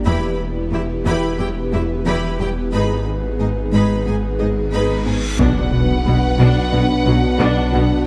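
A cinematic hybrid of orchestral and electronic film scoring, this brief cut from a longer piece moves at 90 BPM in a straight 4/4 with a relentless, brooding mood, passing from Em through G#m to Bm. From the start, a thick, beating detuned saw bass growls menacingly underneath while an airy, breathy pad with chorus holds sustained chords in the background. A harp-like synth pluck rings softly through arpeggios, coloured by chorus, phaser and delay, as lush symphonic strings fill the middle: a clear, focused violin section on a second line, a smooth, distant viola section in accompaniment, and a rich cello section supporting the bass. A huge, bright reverse cymbal rises from 4.9 seconds into an impact at 5.4 seconds, where a warm, expressive studio violin section takes the melody on a high F#5. At that point very quiet mellow French horns and trombones add sustained chords, a dark tuba and a woody double bass section deepen the low end, and a punchy, funky analog bass riff sits in the background, all held in a moderate recital hall reverb.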